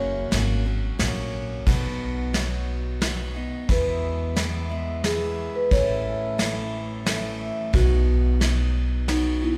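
Heartfelt and nostalgic, this short cut from a longer honky-tonk and classic country piece moves in a straight 3/4 at 89 BPM. A bright, full-bodied picked steel-string acoustic guitar carries the accompaniment, joined up front by a woody, thumpy pizzicato upright bass on gut strings and a soft brush drum kit with a tight kick, medium-tuned snare and ride cymbal. At 3.7 seconds a marimba played with soft mallets enters with a mellow, round melody spanning D#4 to C#5. The chords pass from F# through B, E and A before returning to B. A moderate concert hall reverb gives the recording the spacious air of a church or hall.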